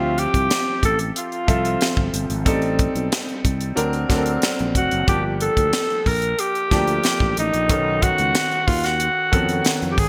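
A growling alto saxophone carries the melody up front, its raspy, gritty tone and vibrato giving this slick, urban excerpt of polished 1980s jazz-funk pop its character. Beneath it, a concert grand piano with a deep bass register, long sustain and a subtle chorus supplies the accompaniment. A fretless electric bass sounds bright, direct and growly, sustaining its notes in a low register. A tight funk drum kit enters at 0.2 seconds with a high-tuned snare, a tight kick and hi-hat, the kit dry and up front yet touched with gated reverb. At 92 BPM in a straight 4/4, the harmony moves from a rootless Dm11 through Am7b5, D7b13 and Gm7 to B9, all set in a bright digital production with a moderate plate reverb.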